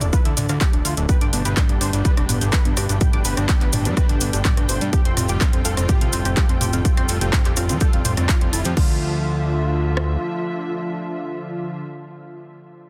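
A dense, heavily limited modern mix with little reverb carries this driving, melancholic melodic techno excerpt at 125 BPM in D dorian, where an overdriven house drum kit with a punchy kick, handclaps, hi-hat, rim click, toms and crash sits up front beside a fat, saturated sawtooth bass, a grainy close cabasa rattling behind them. Most of the synth layers breathe with sidechain pumping: a thick, nasal unison lead with vibrato and dub echo carries the melody, a tight wave-folded sequenced synth runs arpeggios through chorus, phaser and cassette-tape colour until about 9.0 seconds, and a brassy, evolving pad enters with stabs at 1.2 seconds. Beneath, a veiled con sordino string section holds sustained chords and a very quiet, mellow drone hums, as the harmony moves from Dmadd9 through G and Fadd9 before returning to Dmadd9 at 8.8 seconds. Around then the cabasa and most of the kit fall away, and only the kick and rim click carry on until about 10.1 seconds.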